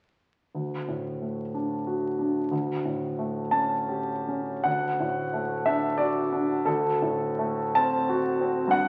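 A clear concert grand piano, placed up front, carries this brief romantic character piece alone from 0.5 to 8.9 seconds, ranging from D2 up to A5 with deep bass and long sustain. The mood is hopeful and warm, set in D major in 6/8 at roughly 49-64 BPM counted in dotted quarters, played with free rubato and tuned slightly high at A4 = 441 Hz. The harmony moves from D to A7 over a D bass, returns to D at 4.7 seconds as a new section begins, then turns to D7. The instrument's polished, intimate tone comes with audible action noise, while a wet recital hall reverb with a 1.6-second decay surrounds it. Everything is heard through the crackle of a very old 78 rpm record, and the passage is cut from a longer piece.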